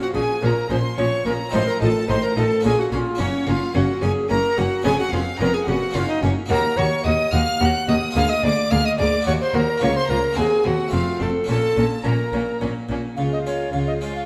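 Stormy and driving, this baroque-style concerto movement in triple time, cut from a longer piece, puts an airy, mellow tenor recorder up front on the melody, its tongued notes carrying a breathy chiff, alongside a rich, smoothly bowed violin section singing with vibrato. A dry, close-miked harpsichord with a round, plucked tone supports them with a very quiet viola section, while a second violin line and a distant, clear cello section sit in the background and a lush, expressive double bass section anchors the low end. A wet recital hall reverb surrounds the ensemble, and a brief new section begins at 13.2 seconds.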